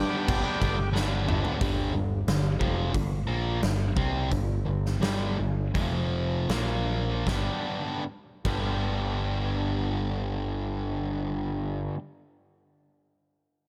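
Classic rock excerpt in G mixolydian at 76-91 BPM, driving and confident, where a gritty overdriven tonewheel organ with slow rotary speaker and tape echo sounds a brief G4 melody until 0.9 seconds, a sludgy, double-tracked distorted guitar riff stays up front throughout, a growling overdriven picked bass holds the low end, and a huge arena drum kit with punchy kick and bright cymbals plays a fill from 0.9 to 1.6 seconds before the music slows through G5, F5 and Bb5 chords and returns to G at 7.3 seconds, all in small room ambience.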